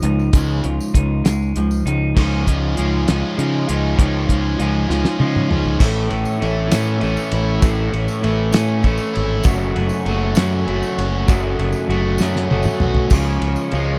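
Indie rock in a bittersweet, cool 6/8 sway, this dry, close 1970s-style studio recording cut from a longer piece pairs riffs from a crunchy overdriven guitar with subtle chorus and a twangy, slightly broken-up guitar through a small old amp with spring reverb, over a growling, punchy, overdriven fingered bass up front and a cloth-damped, thuddy drum kit with dark cymbals and a fat snare that plays fills at 4.9 and 12.2 seconds, while a jingly tambourine sits in the background and a very quiet, clear tonewheel organ with slow rotary speaker enters at 5.8 seconds with sustained chords.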